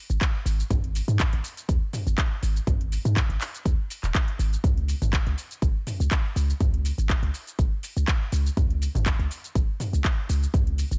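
A lightly swung groove drives this spiritual, earthy afro house passage, built on a punchy electronic kick that sits up front from 0.2 to 10.6 seconds and a house drum kit of handclaps, metallic hi-hats, shaker and toms, both layered and given a tape-warm, small-room character. Underneath, a deep, boomy 808-style bass with a sine tone, a noise layer and a fast, decaying attack stays mellow and up front, pumping against the sidechain. The dry, dark-topped mix keeps the whole cut close and grounded.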